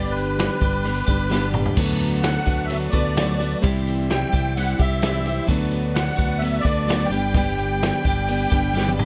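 The drums and shaker set a straight 4/4 pulse at 129 BPM, with the vintage kit's tight kick, medium-tuned snare, hi-hat, toms and crash sitting up front and breaking into short fills around 1.3 seconds and again at the close. This is a fragment of folk rock and heartland rock in G major with a warm, open-road mood, cycling through G, D6 and C. A musette accordion carries the melody in a shimmering, wet-tuned voice lifted by plate reverb, while a picked steel-string acoustic guitar with fresh strings picks out the accompaniment. Behind them a clean, twangy twelve-string electric guitar plays a compressed riff, and a fingered electric bass anchors the low end with a round tone. A lightly overdriven tonewheel organ with key click and slow rotary speaker holds very quiet sustained chords, and a grainy egg shaker sounds distant in a large room. The production is dark, with light reverb.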